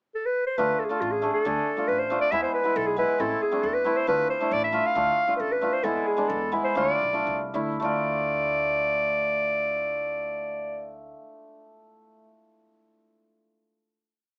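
This is a short, complete klezmer piece in 2/4, festive yet soulful, in D dorian sharp4 at 100 to 137 BPM. It moves through Dm, E, Am and E7 and slows from 5.8 seconds into a held final chord. A warm, classical-style clarinet opens alone at 0.1 seconds with an ornamented modal melody. At 0.6 seconds an up-front hammered dulcimer joins with shimmering, ringing syncopated triads, alongside a woody pizzicato upright bass on roots and fifths on the main beats, all set in a moderate small-room reverb with a small-speaker sound.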